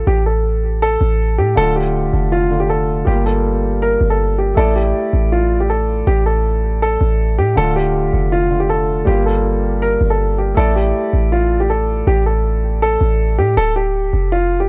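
A deep, boomy 808-style bass sits up front in this brooding, hard-hitting trap fragment in D minor, its sine tone built on a noise layer with a fast attack and decaying tail, at 160 BPM with a half-time feel. A dark concert grand piano carries a mellow, low-pass-filtered melody from the start, while a filtered baby grand piano with long sustain enters at 1.6 seconds to voice the Dm, Gm7 and Asus4 changes before stopping at 13.6 seconds. The dry, gritty recording has a small room ambience and is cut from a longer piece.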